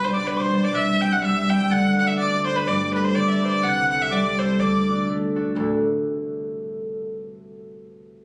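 A cheerful, lively Celtic polka fragment opens at once with a clear, focused bowed fiddle carrying the swung melody up front, a breathy, mellow metal tin whistle with crisp chiff adding a second line above it, a ringing fingerpicked concert harp accompanying through the G/B, C, D6 and Gadd9 changes until it rings on alone to 7.4 seconds, and a woody, growly pizzicato upright bass sitting in the background, all in a recital-hall reverb with the roomy, compressed feel of a phone recording.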